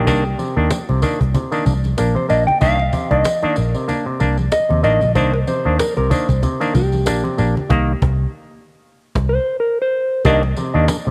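A mellow, clean electric guitar with wah plays a solo from the start over stringy, overdriven clav stabs through auto-wah and a round, foam-muted bass up front, joined at 0.1 seconds by woody cajon, low-tuned congas in the background and a jingly tambourine, forming a driving, hypnotic funk groove with a band accent from 7.7 to 10.3 seconds, all set in a small room with light reverb in this cut from a longer piece.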